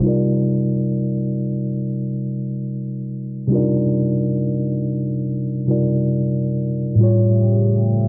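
A worn, slightly out-of-tune tine electric piano sits up front, carrying the accompaniment over a Cm11 chord in this late-night, longing R&B fragment at 69 BPM, with a gentle sixteenth-note swing in C dorian. At 7.0 s the harmony shifts to A7b13 as a shimmering, detuned pulse-width pad with a slow attack slips in quietly behind it, sustaining chords until the cut at 8.1 s. Both parts carry a cassette-tape character, and a filter sweep runs through the whole passage inside a moderate studio reverb, giving the home recording a softened, dusky sound.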